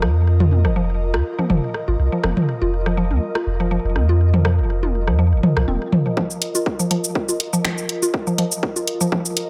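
A woody, nasal, mallet-like synth pluck riff with chorus and sidechain pumping drives this cool, quirky minimal techno cut from a longer piece, floating over a soft, breathy pad with a slow attack and a moving notch. Beneath them, a deep sub bass with a pitch-drop attack and tube saturation and an organic electronic kit of delayed rim clicks and toms hold the groove until they fall away by 6.0 seconds. At 6.2 seconds a build-up begins as an overdriven, punchy electronic kick steps up front, joined at 6.3 seconds by a house kit of finger snaps, hi-hat and shaker, both re-recorded in a large room.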